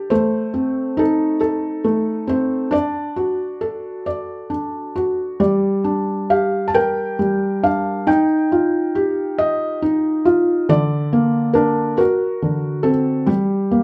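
A felt-muted upright piano plays alone, intimate and up front in a moderate studio reverb, in this wistful, gentle children's lullaby in G minor, drifting in a rubato 6/8 at about 46 BPM through chords from A diminished and D to E-flat add9 and D7 before landing on G minor at 13.3 seconds, where this short cut from a longer piece ends.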